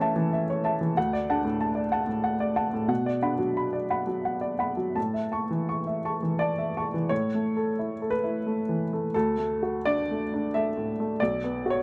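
Intimate and hopeful, this short excerpt of neoclassical minimalist piano moves in a rubato 3/4 at roughly 82-95 BPM in A major, drifting through A, D and B minor chords. A solo upright piano, woody and natural with short sustain and audible action noise, sits up front, spanning B1 to C#6 over 11.8 seconds. Close, detailed microphones and light reverb keep the sound near and personal, with a new section arriving at 7.1 seconds.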